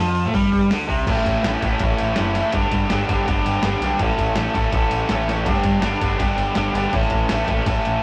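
Garage rock in A mixolydian at 164 BPM, this swaggering, rowdy 8-second excerpt from a longer piece pairs a bright, overdriven, double-tracked guitar riff up front with a growling picked bass, gritty and direct, over a muffled, pitched-down sampler-style kit with a thumpy kick, medium-tuned snare, hi-hat, ride and crash, moving from a brief D5 opening into an A–G vamp, all set in a moderate stone-room reverb with the rough, tube-saturated feel of a rehearsal-room take.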